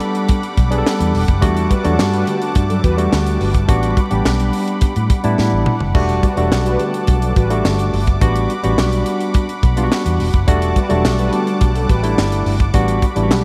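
A dreamy, reverb-soaked mix with a long cathedral tail and a layer of vinyl crackle gives this early-eighties boogie funk fragment a hazy, late-night glow, though the groove itself stays funky at 106 BPM in a straight 4/4, centred on E minor. A tight, dry acoustic drum kit sits up front with a high-tuned snare, a tight kick, hi-hat, handclaps, toms and splash cymbal, and a short drum fill arrives at 5.4 seconds. A dark, round, foam-muted fingered electric bass joins at 0.6 seconds, heard through an amp and placed close, while a bright, barky tine electric piano plays accompaniment through a combo amp. Behind them a bold, nasal sawtooth pad holds sustained chords with a soft attack, a filter sweep and chorus, and from 1.7 seconds a mellow synth brass line sits in the background, treated with chorus, phaser and analog delay. The harmony alternates between A13sus4 and Em11 throughout this single section.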